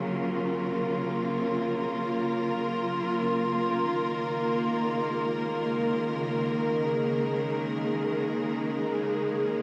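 A dark, hall-drenched sound frames this peaceful, luminous ambient passage in free time, where a lush, focused studio string section holds sustained chords with shimmer reverb, moving from Gbmaj7 to Absus2 at 3.9 s, over a nasal, tense bowed-like drone on Db3 that sits in the background throughout.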